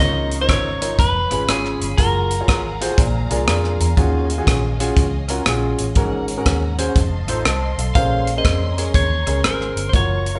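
A swung 4/4 groove at 121 BPM drives this jubilant, reverent uptempo gospel excerpt: a crisp fusion drum kit of hi-hat, punchy kick and rim click sits up front from 0.3 seconds over a round, foam-muted fingered electric bass. A natural-sounding grand piano moves through chords from Db69 through Gbmaj9 and Ebm11 to Bbm9, adding a fill at 3.0 seconds, while a dark, lush bowed string section holds sustained chords in the background. A clean, picked electric guitar with a scooped tone states the melody at the start and returns at 8.0 seconds, as the band plays live together in one large studio room with moderate reverb.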